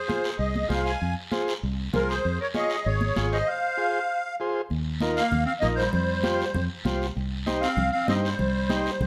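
A driving, danceable cumbia groove at 195 BPM in straight 4/4 and F minor, carried by high-tuned, damped congas sitting back in the mix, a raspy guiro, and a round, dark fingered electric bass up front that enters at 0.4 seconds. A shimmering, reedy musette accordion leads the melody, while a bright clarinet with vibrato and scooped, soft-attack notes traces a jazz-style second line, and an overdriven vintage combo organ fills in the accompaniment. Moderate studio reverb frames this short cut from a longer piece, whose harmony moves from Fm and Db/F toward Ebsus2, Fsus2 and Cm after 4.7 seconds.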